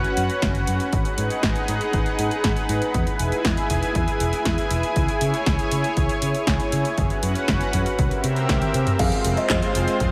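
A steady, straight 119 BPM pulse drives this danceable, nostalgic italo disco excerpt in G# minor, where a lush, detuned sawtooth unison pad with chorus sustains warbling chords over a bright, envelope-filtered fingered bass and a punchy, tape-warm house kit of snare, handclaps, hi-hat, toms and crash, joined at 0.4 seconds by a layered electronic kick, until a drum fill at 8.5 seconds gives way at 9.0 seconds to a brief, boxy grand piano phrase with tape echo, all bathed in a huge, dreamy ambient reverb.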